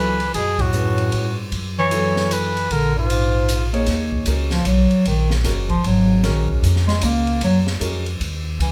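A live band in a large studio room with moderate reverb plays this intense, searching modal jazz excerpt at 152 BPM in a swung 3/4: a breathy, mellow trumpet with vibrato carries the up-front melody over a clear, punchy bass clarinet second line, a warm grand piano with long sustain, woody pizzicato upright bass, and an acoustic drum kit with dark cymbals, a high-tuned snare and a boomy kick, all hitting a band accent at 0.5 seconds before the trumpet drops out at 3.7 seconds and the bass clarinet takes a solo of scooped notes from 3.9 seconds as the music settles into Eb minor.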